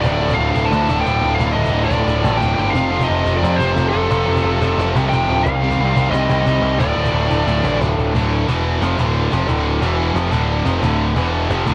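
The overdriven, growling picked electric bass sits up front alongside a bright, double-tracked cranked stack guitar, driving this aggressive, epic heavy metal excerpt in D minor at 178 BPM in a straight 4/4. A second double-tracked, high-gain guitar adds its own bright, distorted low riff, while a dark, distorted lead guitar carries the melody until 7.8 seconds. Beneath them a very quiet pipe organ on full organ, with mixtures, chiff and a majestic baroque voicing, holds sustained chords, dropping out at 8.1 seconds and returning briefly at 10.8 seconds. A snappy, dry cajon with snares, played with soft hands, stays in the background and marks the shift into a second section with a fill at 8.0 seconds, where the harmony moves among D5, E5 and Dm. The guitars and cajon carry a cassette-tape grit, and the whole home recording sits in a small room ambience.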